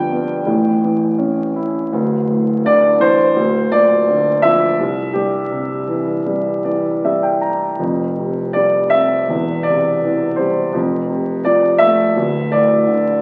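This is a classical, lyrical solo piano piece in F major with a peaceful, warm mood, moving at about 81 BPM in 4/4 with a loose, rubato feel and uneven beats. A single dark grand piano carries everything from 0.0 to 13.2 seconds, spanning D1 to Bb5 with a mellow, up-front tone. The harmony passes through A7, Dsus2, Bb/D and C, then settles through Fsus2, C/E and F before closing on D5. A brief piano fill appears between 6.3 and 7.8 seconds. The sound sits in a moderate scoring-stage reverb and carries the crackle of a very old 78 rpm record, giving this short passage from a longer piece an aged, intimate character.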